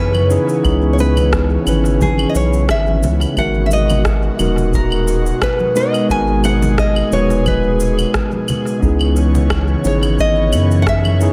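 Relaxed and wistful, this short sunset chillout clip has a bright, fingerpicked nylon-string guitar melody with audible finger squeak and analog delay, set over a mellow tine electric piano with tape echo and an airy, breathy pad with chorus. A round, dark analog bass sits up front, while electronic claves, shaker and rim click with tape echo, very quiet thick-skinned congas and a deep electronic kick drum, arriving at 0.6 seconds, keep a lightly swung pulse. The echo-heavy mix has light reverb, and the chords move from C#m9 to G#m9 and back.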